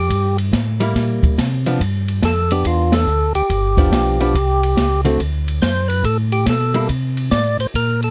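A lightly overdriven, percussive tonewheel organ carries the melody through a slow rotary speaker, while a second, mellow and round organ holds down the bass line on its own slow rotary, key click audible. This is a greasy, soulful soul jazz organ trio cut from a longer piece, swinging at 142 BPM in G mixolydian, with a compressed, hollow-body archtop guitar comping from 0.8 to 6.9 seconds and an open acoustic drum kit with dark cymbals and a punchy kick. The whole band hits an accent at 2.9 seconds over chords moving from C7 to G7, D and Bbmaj9, all in a dry, dark production with the players up front.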